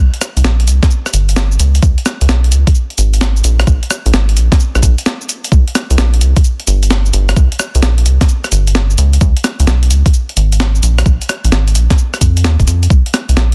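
A rubbery, hollow square-wave bass opens the recording at 0.0 seconds, sitting up front in a low register between F1 and F2, its resonant filter pluck and moving notch giving each dark, sustained note a bouncy shape. This is moody, soulful two-step UK garage at 130 BPM in 4/4, with a 67% swing on the sixteenths. A gritty, compressed breakbeat kit with a sampler-style character joins almost at once, bringing hi-hat, rim click, shaker and a medium-tuned snare at a lower level behind the bass. From 0.8 seconds an overdriven electronic kick arrives, a layered, knocking sound placed squarely up front alongside the bass. Set in a digital ambience with a dense, heavily limited modern master, the short passage is cut from a longer piece and holds a single section throughout.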